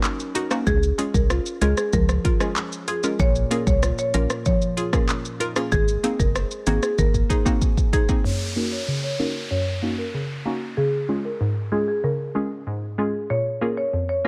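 A hollow, chorused square-wave pluck bounces up front through this hypnotic dancehall excerpt, joined by a woody marimba melody soaked in tape echo, thumb-plucked nylon-string guitar arpeggios, a percussive organ-like FM bass and an electronic afro-pop kit with a deep kick and metallic hats. The bass drops out near 7.2 seconds, the drums follow after a fill at 8.2 seconds and the guitar near 8.8, as a filter sweep and downlifter carry the final stretch.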